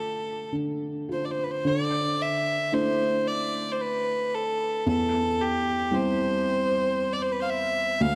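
A dark production bathes this short cut from a longer piece in a lingering church reverb, with a decay of about 3.8 seconds. It is a Celtic slow air in D dorian, with a longing, haunting mood, moving freely in rubato around 57 BPM in 3/4. A single bowed fiddle carries the melody up front and close, its tone clear and biting, with light vibrato, an airy bow and an intense edge. Beneath it, a felt-muted upright piano plays soft, mellow, intimate accompaniment, where the thick felt and audible action noise can be heard. The harmony rests on Dm before shifting to Dsus2 at 1.7 seconds and to C/E at 4.9 seconds, and both instruments play through to the end at 8.2 seconds.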